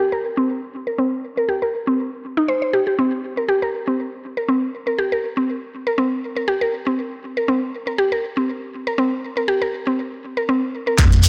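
Warm and hypnotic, this afro house excerpt moves at 120 BPM in 4/4 with a light 16th-note swing, tuned to A4 = 436 Hz. For most of its length a woody, round, full-bodied FM synth pluck with a mallet-like, percussive attack plays arpeggios between C4 and C5, sitting up front with chorus, digital delay and sidechain pumping while a filter sweep runs across it. At 11.0 seconds the groove arrives in a brief burst: a deep, layered electronic kick, a produced deep house kit of handclaps, hi-hat and toms dulled by low-pass filtering, and a round, sine-like sub bass on F2 that pumps against the beat. A grainy, mellow shekere with a vintage, band-limited character joins the drums, and an electronic impact sounds in the background as the passage cuts off at 11.3 seconds. A moderate, lush hall reverb gives the whole mix a spacious, enveloping depth.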